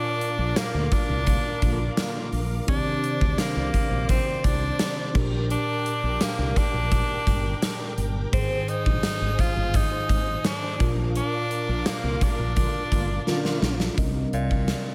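An edgy, forceful tenor saxophone leads this urgent, nostalgic 1980s-style pop excerpt in C minor at 85 BPM, sitting up front with vibrato and a slapback echo as it carries the melody from the first second to the last. Beneath it, a mellow tine electric piano plays clean accompaniment, while a gated drum kit with a punchy kick, medium-tuned snare and bright cymbals drives the straight 4/4 pulse in a bright stone room, joined by a jingly tambourine that is barely audible. A round, dark fretless electric bass anchors the low end, and a vintage string machine voiced as violas holds soft-attack sustained chords in the background with ensemble chorus. Brassy, detuned synth brass stabs with filter sweeps and slapback echo punctuate the opening and return near the close, entering around 0.7 and 12.0 seconds within the band accents, and a drum fill at 13.3 seconds leads toward a final Cm7. A lush hall reverb gives the whole mix a big arena sound.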